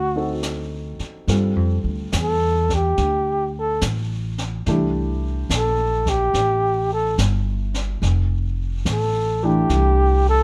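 A breathy flugelhorn and a pizzicato upright bass open this wistful, smoky jazz ballad together at 0.0 seconds, with the concert grand piano and a brush drum kit settling in within the first half second. The flugelhorn sits up front with a soft attack, gentle vibrato and a whispered, intimate tone, and from 1.3 seconds it carries a solo for the rest of the passage, cut from a longer piece. Beneath it, the steel-strung bass is woody and thumpy, while the piano adds warm accompaniment with a deep low end and short sustain. Sitting mid-forward, the drums play brushes across a high-tuned snare, hi-hat and a boomy kick, their top end rolled off in a studio-room sound. The swung harmony moves from D7b9 through Gsus2 and C13 to Fmaj9, and the dry recording, with little reverb, keeps the players close and personal.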